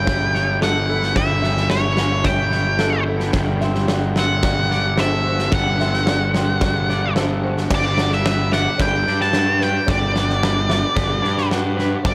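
Light reverb and a small room ambience frame this euphoric, cinematic post-rock excerpt in a straight 4/4. Up front, a dark octave-fuzz lead guitar carries the melody, its distorted tone trailed by analog delay. A growly, bright fuzz bass sits equally forward with overdrive. A big acoustic rock kit enters at 0.1 seconds with a fat snare, a punchy kick, crash cymbals and a rolled-off top. Further back, a twangy, clean electric guitar picks arpeggios through analog chorus and delay, while a felt-muted upright piano adds mellow, boxy arpeggios with audible action noise, also touched by analog delay. The harmony moves from A7/G to D7/G at 3.3 seconds, then opens onto Gmaj7 at 7.7 seconds.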